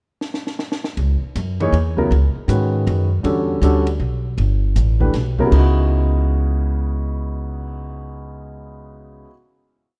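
Intense and searching, this short modal jazz piece swings in 3/4 at 159 BPM in C# minor, opening with a drum fill on a dark, compact cocktail kit with a high-tuned snare and punchy kick before a woody upright bass walks in at 1.0 seconds and an up-front grand piano with long sustain adds syncopated quartal comping over C#m11 and Em11 chords, all in a small room with a rough home-demo feel.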